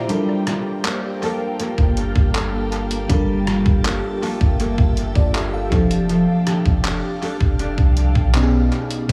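Contemporary R&B at a slow 80 BPM in G dorian, sensual and moody, built on a lush FM electric piano with chorus, phaser and dub echo, a slow-attack ethereal pad with ensemble chorus, and a full-bodied fingerpicked nylon-string guitar playing arpeggios with audible finger squeak. An up-front, tape-warm 8-bit drum machine with handclaps, hi-hat and rim click runs through dub echo, its thumpy kick held back until 1.6 seconds, while a deep, boomy 808-style sine bass enters at 1.8 seconds. The chords move from Gm9 to F69 at 5.7 seconds and B69 at 8.3 seconds in this echo-heavy, intimate-sounding excerpt from a longer piece.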